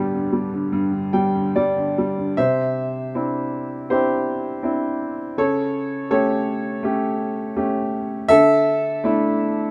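Calm and tender, this short excerpt from a longer piece of lyrical classical solo piano moves in 4/4 with a rubato feel, drifting between 69 and 82 BPM in C major. A baby grand piano carries everything alone, its tone warm and a little boxy, placed up front by close, detailed microphones with a light touch of reverb around it. Its range spans G2 to G5, and the tuning sits slightly low at A4 = 436 Hz. The opening phrase rests on G, with a brief piano fill from 0.7 to 2.4 seconds leading into a new section. From there the harmony unfolds through Cadd9, then A7/C# at 5.4 seconds, before settling on an open Dsus2 as the passage ends at 9.7 seconds.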